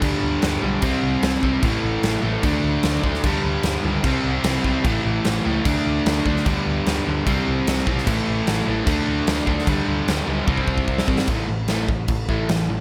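A big arena sound fills this short cut from a longer hard rock piece, with a lush hall reverb giving the band a large, open space. At 149 BPM in a straight 4/4, the mood is swaggering and energetic, driven by a chord cycle that moves from G over D through C5, A5 and D5 and keeps coming back around. Up front, a big acoustic rock kit hits with a punchy kick, a medium-tuned snare, bright crash cymbals and a drum fill from 10.5 to 11.3 seconds. Behind it, a bright, double-tracked distorted guitar plays the riff until 11.3 seconds, alongside two warm overdriven semi-hollow guitars, one of them colored by spring reverb and slapback echo. A dark, round hollow-body short-scale bass, picked and amped, anchors the low end, and the guitars and bass carry on into a brief new section that closes at 12.8 seconds.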